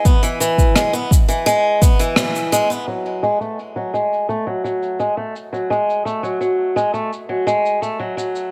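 Folktronica in F# minor at 85 BPM, this wistful, autumnal fragment of a longer piece sets a bright, boxy picked acoustic guitar playing swing-style arpeggios up front with fresh-string finger squeak, delay and a low-pass filter, over brushed cabasa and rim click from a small room, with a deep, produced electronic kick that stops at 2.0 seconds, a band accent and break from 2.2 seconds, and then a filter sweep on the guitar and drums from 2.9 seconds in a light reverb and studio ambience.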